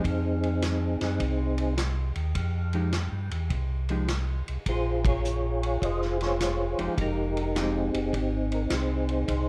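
Organ melody, archtop guitar, organ bass and drums open together on this smoky, soulful soul jazz organ trio excerpt in F minor at 104 BPM with a swung feel, the round, mellow percussive organ lead and the piping, key-clicking organ bass both turning through a slow rotary speaker, the hollow-body guitar comping cleanly until 7.9 seconds, and the gritty, punchy drum kit with dark cymbals keeping time as the harmony moves from Fm9 to Bbm9, where the band hits an accent at 5.0 seconds, all in a dark production with light reverb.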